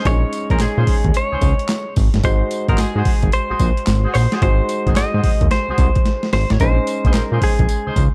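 New jack swing R&B at 110 BPM in Bb minor, punchy and slick, with a swung 16th-note feel and a short excerpt that moves from Bbm11 to Ab7 and back. An overdriven, gritty sampler-style drum kit with a thumpy kick, handclaps, tambourine and hi-hat sits up front beside a fat, detuned sawtooth analog bass with a filter sweep. A polished grand piano with long sustain fills out the harmony, while a mellow, vintage jazz-style horn section with light vibrato adds stabs. A bright, twangy clean electric guitar, recorded direct, carries the melody, and a drum fill at 6.1 seconds leads back to the opening chord in a dark, dry mix.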